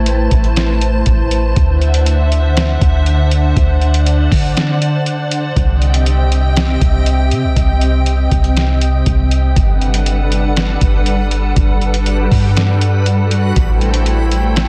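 A half-time 4/4 groove at 120 BPM in G major anchors this floating, dreamy stretch of atmospheric cloud-rap hip hop: a muffled, pitched-down trip hop sampler kit with thumpy kick, medium-tuned snare, hi-hat and vintage 12-bit grit sits up front beside a deep, round 808-style bass, while a glassy, ethereal FM pad sustains chords moving from Am through D7, Cm and Gmaj7 with ensemble chorus, reverb and sidechain pumping, and a reversed, granular, detuned texture swells in the background from 10.9 seconds.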